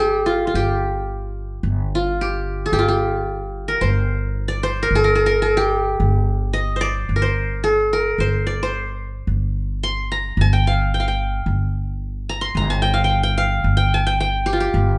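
A qanun carries the melody from the start, its triple strings plucked with fingerpicks for a bright-edged, up-front voice that ranges from F4 up to C6. Beneath it, a pizzicato upright bass with steel strings holds a low G1, its tone woody, growly and thumpy, sitting just as close to the listener. This Arabic piece in G maqam bayati moves in a straight 4/4 and feels soulful and melancholic, both instruments playing together throughout the 15 seconds of this cut from a longer performance. The pair sound like a band playing live in one room, wrapped in a moderate large-studio reverb of about 1.0 s. The top end is rolled off above 10.5 kHz.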